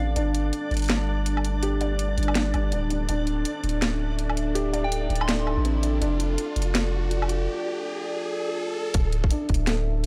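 A felt-muted upright piano plays mellow, intimate arpeggios with audible action noise over a deep, long 808-style bass, a reversed, granular swelling texture and a faint, warbling FM synth bell, opening this dark, spacious half-time drum and bass excerpt in D minor at 164 BPM. A detuned sawtooth pad adds moody sustained chords with sidechain pumping, and an overdriven kit with cracking snare, bright hats and woodblock drives a swung groove, all captured in a dry, gritty hardware recording with digital ambience. An electronic riser builds from 2.2 seconds through a brief break, and a tight, overdriven electronic kick lands with the drop at 8.9 seconds.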